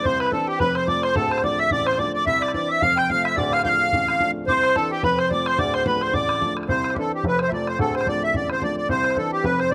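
Celtic folk reel at 218 BPM in D dorian, spirited and driving, with a swung eighth-note lilt and a repeating cycle of Cadd9, F and Dm chords. A reedy, sweet accordion with light tremolo tuning carries the melody up front from the very start. Above it, a metallic, airy whistle with vibrato and a crisp, chiffy attack plays a second line through a slapback echo until it stops at 6.6 seconds. Beneath them, an intimate, woody upright piano that is slightly detuned, with audible action noise and its own slapback echo, supplies a vintage-toned accompaniment. Further back, an open, boomy bodhran keeps the percussion going, while the overall sound stays dry and outdoors-like, cut from a longer piece.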